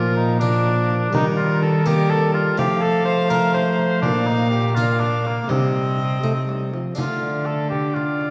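A lilting 6/8 pulse moves at 82 dotted-quarter beats per minute with a straight feel in this rustic yet courtly Renaissance-style consort dance, cut from a longer piece. A gut-strung violin carries the melody with an airy, nasal, reedy bowed tone in period style, sitting close but fairly low in the balance. A mellow cor anglais with light vibrato sings a second line that is punchy and up front, while a breathy trombone fills out the accompaniment. A close-miked Flemish-style harpsichord adds a bright, thin, plucked accompaniment, and a rich gut-string cello anchors the bass prominently. A small, bright frame drum enters very quietly at 0.4 s. The harmony moves from Bb through Eb, F, Bb and Cm before a new section turns to Dm at 7.0 s, all bathed in a wet church reverb within a dark, warm production.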